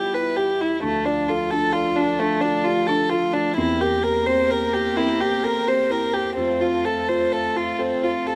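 Neoclassical piano and strings in D minor, moving at 43 BPM in a rubato 6/8, with a longing, fragile mood across a chord path of Em, Dm, C7/E and F in this short excerpt cut from a longer piece. A single violin, bowed sul tasto with light vibrato and an airy, intimate tone, carries the melody up front, while a pure, floating cello traces a second line in the background. Beneath them sit a felt-muted upright piano, mellow and boxy with audible action noise, a dark string section holding soft sustained chords, and a woody, rustic marimba playing dry, vintage-sounding arpeggios, all under light reverb in a rough home demo mix.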